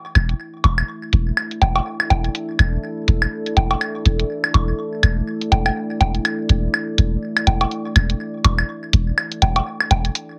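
A swung 16th-note groove at 123 BPM in 4/4 drives this quirky, clinical minimal techno excerpt: bright, layered electronic hi-hats run through a low-pass filter, and an up-front, tape-toned woodblock echoes through a digital delay. A punchy sine sub bass with a pitch-drop attack holds a low E. Quietly behind it all, a deep, moody sawtooth pad, thickened with chorus and its own reverb, sustains an E7sus4 colour, while a small room and heavy radio-style compression keep the sound tight and boxy.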